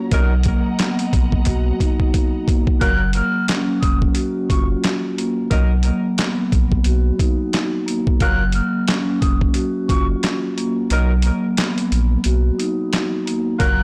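This boom-bap hip-hop excerpt opens on a mellow vibraphone played with soft mallets, its ringing tone shaded by a slow motor vibrato and a cassette-tape coloring, over lush, bowed studio strings. A tight jazz-style saxophone section adds stabs with delay, while a deep, thick sub bass with transformer saturation and a pitched-down, gritty sampler-style kit of thumpy kick, medium-tuned snare, hi-hat and handclaps set a confident, swung groove at 89 BPM in 4/4, tuned to A4 = 444 Hz. A drum fill leads into 2.8 seconds, where the strings drop out and a breathy, close-miked silver concert flute takes the melody in a straight, slightly unsteady tone with delay. The harmony alternates between Bmaj7 and F#maj7, and from 10.9 to 13.6 seconds the kick is muted while the rest of the groove carries on, with the strings returning briefly at the very end. The whole mix sits in a small room ambience with a blown-out, overdriven character, the vibraphone and drums placed up front.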